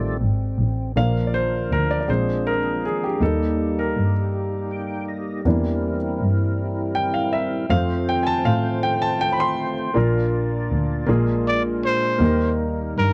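A slow gospel pulse in 6/8 moves at 53 beats per minute, counted in dotted quarters with a straight feel, in B-flat major, and the mood is soulful and uplifting. A natural, up-front baby grand piano carries the accompaniment throughout and takes a solo from 1.0 to 10.0 seconds, while a fat tonewheel organ holds sustained chords with key click, light overdrive, chorus vibrato and a slow rotary speaker, adding a brief fill around 4.3 seconds. Underneath, a single bowed double bass sounds dark and woody with vibrato, placed up front yet with a distant quality. A very quiet, mellow French horn section in classical style adds soft-attacked sustained chords with light vibrato from 0.9 to 9.9 seconds. At 11.5 seconds a breathy, whispered trumpet enters with an intimate jazz-style melody, soft in attack and touched with vibrato. The harmony moves from B-flat through E-flat, C7 over E and F, and the whole fragment, cut from a longer piece, has the dry, close sound of a 1970s studio with light reverb.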